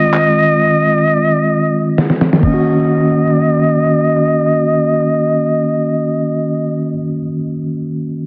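Contemporary R&B in free time and Eb dorian, this short cut from a longer piece carries a late-night, sensual mood. A breathy alto saxophone takes the solo melody in a jazz style, its subtone sound marked by vibrato, scooped notes and a smooth top, with tape echo trailing behind it. A mellow tine electric piano, clean and heard through its built-in speakers, supports it with an Fm7 chord that moves to Ebm7. A dusty, gritty, compressed sampler-style drum kit with a thumpy kick, fat snare, handclaps and crash cymbal sits up front, playing a fill from 2.0 seconds before it drops out at 2.6 seconds. A filter sweep colours the opening, and the piece is set in light reverb and digital ambience under a dense, heavily limited modern master.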